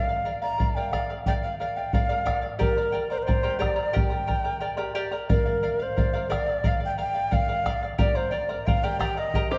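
This is Andean folk for a small ensemble, melancholic and wistful, moving at 89 BPM in a straight 2/4 and cut from a longer piece. A breathy large quena carries the melody from the start, its wooden, end-blown tone close-miked with vibrato, a crisp chiff on each attack and an expressive shape to its lines. Beneath it a bright, fingerpicked charango shimmers on its double strings, some of them doubled at the octave. A deep, vintage-sounding bombo sits up front from 0.6 seconds, its band-limited thump dark. The harmony alternates between Bb and G minor across two matching passages, with a short break at 4.6 seconds, and a mellow, plunky open-back banjo appears with a single twangy note at 9.5 seconds. A wet concert-hall reverb and a dark, warm production, tuned slightly high to A4 = 441 Hz, give the whole piece a spacious, somber glow.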